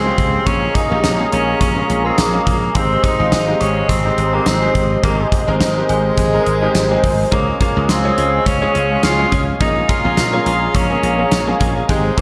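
The bright tenor saxophone leads this dramatic, moody 1980s-style pop excerpt, its forceful, vibrato-laden melody sounding distant and roomy through a touch of delay. Moving at 105 BPM in 4/4 with a light sixteenth-note swing, the band is anchored by a gated 80s drum kit with a fat snare and tight kick sitting up front in a big, airy room, alongside a growly, punchy slap bass. A clear concert grand piano with deep bass and short sustain carries the accompaniment through an ensemble chorus, while a detuned analog pad with a soft attack and long release holds sustained chords in the background under its own chorus. High above, a very quiet FM synth chime rings out an inharmonic, decaying second line. At 7.3 seconds a direct-recorded clean electric guitar enters with a picked, compressed riff treated with subtle chorus and delay, as the chords move from Bbm7 through Abmaj7 to Db, and the whole mix is soaked in dreamy plate reverb.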